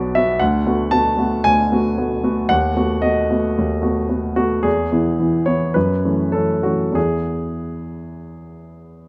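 Close, detailed microphones and a moderate recital-hall reverb frame a present, polished baby grand piano with short sustain, heard up front and alone throughout this brief 9.1-second excerpt of a hopeful, passionate romantic character piece in 4/4, played with rubato at 91-117 BPM from B1 to A5, tuned to A4 = 441 Hz, and moving through Bm7/D, B7/D#, E and F#m7 before settling back on E at 7.0 seconds.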